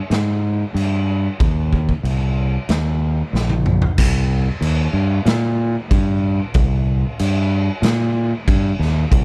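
Heavy and ominous, this stoner and doom metal passage moves at 93 BPM in straight 4/4 in C minor, its dry sound putting an overdriven, growling fingered electric bass up front, punchy and bright as it ranges from Bb1 to Bb2. A raw garage drum kit of kick, snare, toms and crash sits just as close, gritty and saturated with a pumping stone-room ambience and a rolled-off top. A drum fill from 3.3 s carries the music into a new section at 4.0 s, which runs until the cut at 9.2 s.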